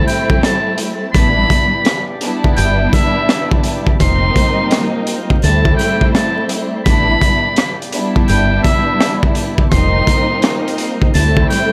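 Tough and dark, this swung boom-bap hip-hop excerpt sets a buzzy, metal-muted jazz trumpet melody with vibrato over a lush, bowed string section that sings with portamento, while a crunchy, saturated breakbeat kit with a tight kick and high-tuned snare sits up front, dusted by very quiet sleigh bells. At 1.1 s a round, punchy dub bass and a faint tonewheel organ with key click and slow rotary speaker join beneath sus-flavoured ninth chords. Vinyl crackle and light reverb frame the whole thing.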